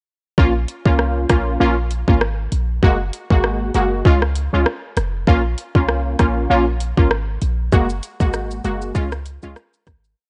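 Hypnotic and bouncy, this short dancehall piece sets a sparse electronic beat of tight kick, metallic hi-hats, rim clicks and shaker under a deep, boomy sine 808-style bass playing syncopated low lines and punchy, detuned sawtooth brass stabs with chorus voicing syncopated chords over a Bbm, Gbadd9 and Db progression, all dry and up front through a worn, warbling cassette-tape sound with a dulled top end before fading out from 7.7 seconds.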